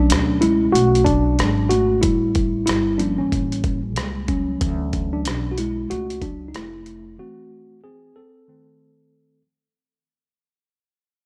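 Mellow and nocturnal, this fading jazz-hop excerpt at 93 BPM with a 16th-note swing sets a worn, slightly out-of-tune tine electric piano up front over a woody pizzicato upright bass and a gritty, overdriven sampler-style kit with a thumpy kick, hi-hat and rim click, moving through rich chords like Bm9 and Dmaj7 in a small room until the drums and bass drop out just after seven seconds and the piano carries the break alone.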